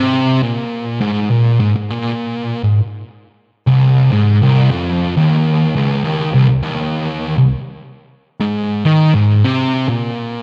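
Ominous and sludgy, this metal fragment cut from a longer piece moves at 102 BPM in a straight 4/4. A lone picked electric fuzz guitar, double-tracked and up front, plays by itself for the full 10.4 seconds, its distorted tone spanning C2 to Eb3 and trailed by tape echo. A moderate studio reverb and a dark, warm production give the riff a heavy, murky weight.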